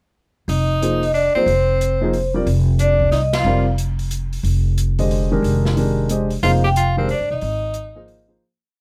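A swung 3/4 pulse at 182 BPM drives this brief, spiritual and intense modal jazz piece in F dorian, opening on an Fm11 chord, with the upright bass playing a woody pizzicato two-feel up front and the small-room drum kit keeping time with sticks on the hi-hat over a boomy kick, a medium-tuned snare and smooth, dark cymbals. The ringing vibraphone, its motor off, spins a free melody that never settles on a recurring motif, while a punchy, forceful tenor saxophone adds a vibrato-laden second line with octave doubling, and the band hits an accent at 3.3 seconds. Beneath them, a mellow, intimate grand piano comps in syncopated quartal voicings with audible action noise, all captured by close, detailed microphones in light reverb before the fade-out begins at 6.8 seconds.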